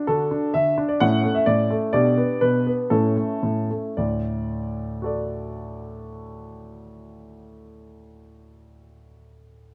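This classical-period piano sonatina in D major has a playful, cheerful character, moving at 107-130 BPM in 4/4 with a flexible, rubato feel. A clear grand piano plays solo for the whole 9.7 seconds, ranging from D2 to F#5 and sounding present and up front. The opening phrase eases back in tempo through its first 4.0 seconds, passing through D, A, G/B and A before arriving on D as a second section begins. A moderate stone room reverb gives the instrument a sense of space. The recording is cut from a longer piece, so it captures only a brief turn of the sonatina's playful, cheerful writing.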